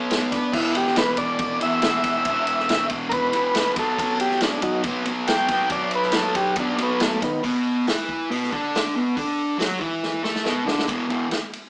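Raw and rowdy, this garage rock fragment, cut from a longer piece, charges along at 139 BPM in a straight 4/4. A dark, double-tracked fuzz guitar pounds out the riff up front, picked and compressed, ranging from E2 to A4 across power chords on B and E. An overdriven combo organ with a reedy tone and light vibrato carries the melody as a solo from the start until 7.4 seconds, sitting just as far forward in the mix. A vintage acoustic drum kit drives alongside, also up front, with a punchy kick, a medium-tuned snare, hi-hat, ride and crash, and a fill from 10.0 to 10.9 seconds. The band sounds like it is playing live in one large studio room, with moderate reverb and a small-speaker character that adds to the grit.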